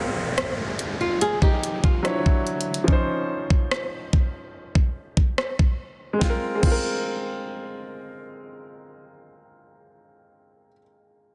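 Set in light digital ambience with a dense, heavily limited modern master, this tender, romantic contemporary R&B excerpt moves at 72 BPM in Ab major, its chords passing from Ab6/9 through Dmaj9 and Dbmaj9 before returning to Ab6/9. A natural-sounding baby grand piano with short sustain plays accompaniment up front for all 11.3 seconds, an electronic downlifter sounds beneath it early on, and from 0.4 seconds a produced R&B kit adds a knocking kick, a fat snare with soft clipping, hi-hat, rim click and crash, re-recorded in a small room. From 1.0 seconds a boxy, fingerpicked flamenco guitar briefly plays arpeggios through delay, its finger squeak audible.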